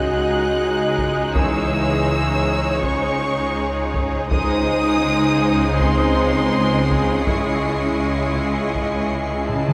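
Mysterious and tense, this cinematic suspense cue, cut from a longer piece, sets a clear, distant violin melody over a smooth second violin line, intense violas, mellow French horn chords in the background, focused double basses and warm cellos on a low pedal, with hard-stick taiko drums entering at 1.0 s, a rich, lush violin texture joining high above from 4.3 s, and a drum fill at 9.5 s, all in a moderate concert hall reverb.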